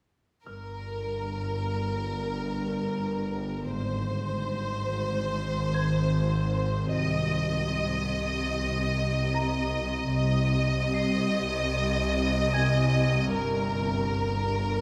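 A clear, focused violin section carries the melody up front, its lush vibrato sitting over rich, expressive cellos with portamento and a smooth-topped double bass section in this mysterious, uneasy fragment of a cinematic suspense score. From 1.7 seconds a tense, string-like synthesized drone with ring modulation, a noise layer and a slow attack hums in the background, while a thumb-plucked concert harp rings softly high above. A wet scoring-stage reverb surrounds the ensemble as the harmony moves from Gm7 through Ab and Cm back to Gm.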